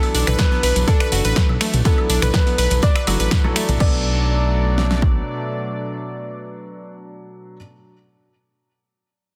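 A straight 4/4 groove at 123 BPM drives this expansive progressive house passage in B minor, cut from a longer piece and opening on a drop that runs to 3.8 seconds over a Dadd9 chord before moving to Bm7. An up-front pop drum kit with a punchy kick and fat, overdriven snare enters at 0.4 seconds, layered over a deep house kit of crash, ride, hi-hat, finger snaps and snare, while overdriven electronic woodblock, toms and congas sit in the background beside a very quiet, jingly tambourine. A fat, thick analog bass built from detuned sawtooth and triangle waves with wave-folding and a filter sweep pumps up front, stopping at 5.2 seconds. Above it, a round, bright analog pluck plays chorused, tape-echoed arpeggios until 4.0 seconds, as a smooth, sustained analog pad holds chords with a soft attack and long release. A dark, mellow grand piano carries the melody through digital delay, and a felt-muted upright piano, intimate with audible action noise, adds tape-echoed stabs, both sidechain-pumping under light reverb and a dense, heavily limited modern master.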